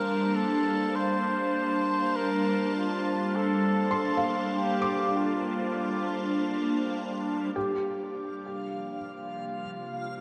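A flugelhorn melody, an evolving wavetable pad and a felt-muted upright piano all begin together in this luminous, serene ambient excerpt, which opens on a Gm11 chord. The flugelhorn carries the melody in a vintage, classical solo style with light vibrato, washed in shimmer reverb and delay, and it falls silent at 7.0 seconds. Beneath it, the morphing pad holds sustained chords with a detuned unison tone, slow attack and long release, treated with ensemble chorus, phaser, ring modulation and shimmer reverb, and it sits bright and up front. The soft, mellow piano plays intimate arpeggios, also carried on shimmer reverb and delay. The harmony moves to C7sus4 at 7.6 seconds, and at 7.9 seconds a reversed, granular texture rises in with a soft attack and dreamy, triangle-toned glow. A lush hall reverb surrounds the whole piece, and the production leans dark and warm.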